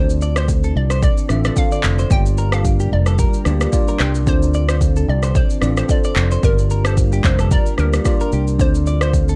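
An overdriven afro-pop drum kit sits up front with a deep kick, handclaps, rim clicks and shaker, joined by a fingered electric bass in this hypnotic, smooth afrobeats excerpt that sways between Dm7 and Gm7. A bell-like tine electric piano with phaser and a twangy, picked clean electric guitar with subtle chorus and tape echo fill the middle, while a hollow, bouncy square pluck carries the melody through chorus and tape echo. From 0.9 seconds a glassy, ethereal FM pad hovers very quietly beneath, and the dark production keeps reverb to a minimum.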